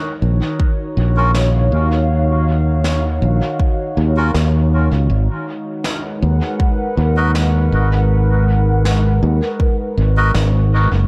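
A saturated, up-front fingered electric bass anchors this deep, meditative ambient dub cut at 80 BPM in G# dorian, with a deep, layered electronic kick beneath it and a distant, roomy brushed snare carrying dub echo. A warbling, lo-fi pad of detuned sawtooth and triangle tones swells in slowly and holds mellow, nostalgic chords with chorus and its own built-in reverb, moving from D#m7 to G#m7 at 5.1 seconds. Reedy, breathy melodica stabs enter at 1.2 seconds, filtered and trailing dub echo through an echo-heavy mix.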